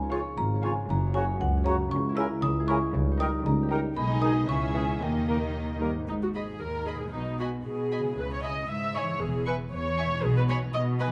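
Playful, whimsical cinematic film cue in G# minor at 116 BPM in 2/4, with a magical, quirky air: a woody, dry xylophone with rubber mallets carries the melody for the first 5.5 seconds over dark French horn chords, a mellow tuba, muted double basses and cellos, and a bright, ringing concert harp arpeggiating in the background. Muted, veiled strings with vibrato fill the texture, with a violin melody and second line sitting back, violas up front in the accompaniment, and an airy, very quiet flute ensemble, a mellow clarinet, a cor anglais and a bassoon adding woodwind lines. Around the 6-second mark the winds, horns and tuba drop away, leaving the con sordino strings and harp to continue in a moderate recital hall reverb.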